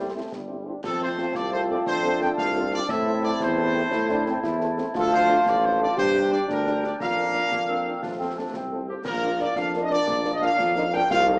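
This spirited, proud military-style march for wind band in 6/8 opens with a trumpet section carrying the melody up front, with light vibrato, over a mellow woodwind second line, dusky French horns and soft-attacked trombone chords in the background, and a mellow tuba bass; concert snare, bass drum and dark clash cymbals join at 0.3 s, and a clear solo euphonium adds a prominent second line from 0.8 s, the ensemble sitting in a roomy large-studio reverb with a small-speaker tone.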